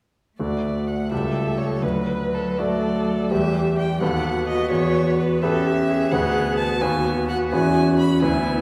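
Heard from further back in a reverberant recital hall, this short cut from a quick classical-period movement for piano quintet moves at 85 BPM in a rubato 6/8 in D major, with a lively, graceful mood. A bright, brilliant grand piano sits up front as accompaniment, with audible action noise and long sustain, while a smooth, even violin carries the melody with vibrato and a clear, focused cello plays a second line. From 1.1 s a viola joins the accompaniment, adding a rich tone with soft attacks, portamento and expressive vibrato.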